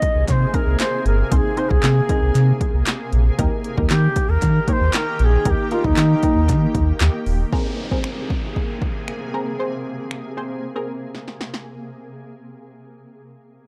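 An airy, reedy bansuri carries the melody with tape echo over punchy analog drum machine beats, sawtooth chord stabs coloured by chorus and phaser, and a shimmering, ethereal pad that pumps with sidechain compression in this upbeat, carefree dance-pop excerpt at 116 BPM in Ab major. A deep sine-and-triangle sub bass with its octave enters at 0.2 seconds, sitting up front and pumping too, while very quiet, crisp group handclaps add a vintage human touch. The bansuri falls away at 6.9 seconds, and an electronic downlifter sweeps in at 7.5 seconds as the chords return to Abadd9, before a closing drum fill in a dry, close 1970s-style studio sound.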